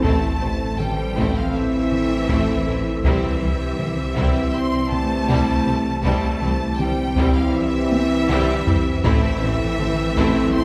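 In a straight 4/4 pulse with a taiko drum fill from 7.9 to 9.0 seconds, this tense, relentless cut from a longer cinematic hybrid score sets a lush, focused violin melody over a softer second violin line, smooth violas, cellos, woody double basses, a dark distant French horn section, quiet trombones and tuba, a hollow flute-like chorused pad, a faint round pluck arpeggio, a punchy sub bass and compressed, saturated taiko, all heard from further back in a reverberant concert hall as the chords move from Am to C and back.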